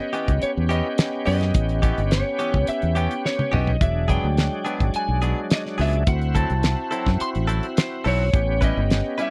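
Soul blues with a straight-eighth feel at 106 BPM in A mixolydian, this laid-back, soulful excerpt sets a slightly broken-up lead guitar melody over a shouting tonewheel organ with overdrive, chorus vibrato and a slow rotary speaker, twangy direct-recorded clean guitar stabs, a round, dark fingered bass and a damped 70s drum kit with a fat snare and tight kick placed up front, moving from A9 to E9, D9 and back to A9 with a drum fill at 3.2 seconds, all captured as a dry, close 1970s-style studio recording in a small room.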